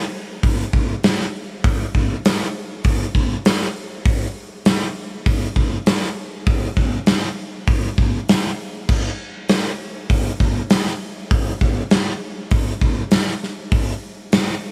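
Polished and airy, this recording places a gated 80s drum kit up front in a bright stone room, with light reverb giving the space a gentle glow. It is a short rock passage cut from a longer piece, moving at 99 BPM in a straight 4/4 and carrying a wistful, dreamy mood. The acoustic kit enters at 0.4 seconds and plays on until 14.5 seconds, using crash cymbal, hi-hat, kick drum and snare drum. The gated room treatment shapes the kit's character, pairing a punchy kick with a medium-tuned snare beneath bright cymbals. The drums carry the whole passage as a single section, giving the track a focused, nostalgic pulse.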